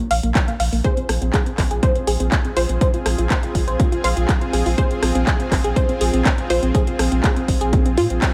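Emotional and dreamy, this progressive house excerpt moves at 122 BPM in a straight 4/4, opening with a glassy, crystalline wavetable pluck spinning arpeggios through chorus and tape echo. It is joined at 0.1 seconds by a thick, saturated sub bass and a pop drum kit of handclaps, rim clicks and metallic hats, with a pumping sidechain on the bass and pluck. An overdriven, deep electronic kick sits up front from 0.4 seconds, and at 0.8 seconds a punchy, full-bodied unison pluck carries the melody with tape echo while a lush, airy supersaw pad holds sustained chords, the harmony shifting from Bb5 to Fm/Bb. Light reverb gives the mix a gentle sense of space.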